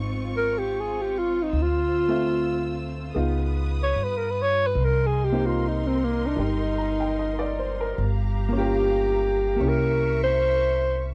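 A mellow alto saxophone carries the melody of this intimate, melancholic jazz ballad, entering at 0.4 seconds with a soft subtone and light vibrato, sitting up front in a slow 74 BPM swing in C minor. Beneath it, a woody pizzicato upright bass anchors the low end, a short-sustained upright piano comps chords, and a lush bowed string section holds smooth, sustained harmonies through a progression from Dbmaj7 to C7b9. The sound is dry and close in the manner of a 1970s studio, touched by light reverb, in this excerpt cut from a longer piece.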